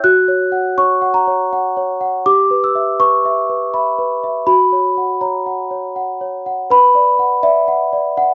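Fragile and eerie, this short fragment of a classical lullaby in B minor sways in 3/4 at 81 BPM, tuned slightly low to A4 = 439 Hz. A lone celesta carries everything from F#4 to F#6, its bell-like, sweet tone struck with soft felt hammers and captured close, dry and up front, while the live room adds a moderate studio reverb and the top end stops at 7.5 kHz. The harmony moves from F# through Em/G and back to F#, settling on Bm at 6.7 s before the clip breaks off at 8.3 s.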